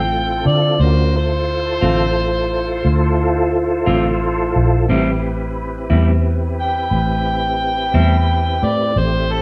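Brooding and smoky, this slow blues excerpt in 12/8 and A minor at 59 BPM features a gritty, overdriven harmonica soloing up front with light vibrato and jazz-style tongue slaps, over sustained chords from a clean tonewheel organ colored by chorus vibrato and a slow rotary speaker, a dark, foam-muted bass that sounds round and punchy, and a picked hollow-body guitar with harmonic tremolo that enters at 1.8 s, while the harmony shifts from Dm7 to Am7 at 4.9 s and the band plays live in a moderate stone room.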